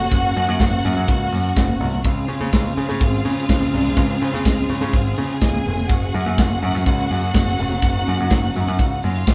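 Disco at 125 BPM in a straight 4/4, danceable and joyful, this short cut from a longer piece moves from Gb to Dbmaj7 at 2.0 seconds and back to Gb at 5.9 seconds. An acoustic drum kit with a tight kick and medium-tuned snare sits up front beside a bright, direct picked electric bass, while a lush, clear string section holds sustained chords and a rich violin section with vibrato and a smooth top carries a second line above. Very quiet, low-tuned congas played with soft hands add color, a grainy, band-limited egg shaker joins in the background at 2.0 seconds, and the band plays together in one room with a wet stone reverb.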